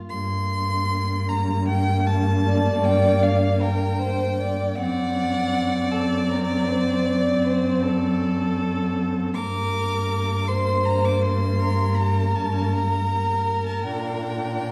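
Yearning and solemn, this slow romantic movement for string quartet unfolds in G minor at a rubato 53 beats per minute in 12/8, cut from a longer piece and tuned slightly below modern pitch. One violin carries the melody high in its range, its tone close and smooth with even vibrato, while the second violin sings a supporting line beneath it with the same rich, bowed sound. The viola holds a focused, distant accompaniment in its low register. The cello sits up front on the bass, its soft attacks and expressive portamento giving the harmony a sighing weight. The chords move from G minor to D7 over F-sharp at 4.8 seconds, back to G minor at 9.3 seconds, and settle on G minor over B-flat near the close. A wet recital-hall reverb places the listener further back in the room, wrapping the ensemble in a resonant glow.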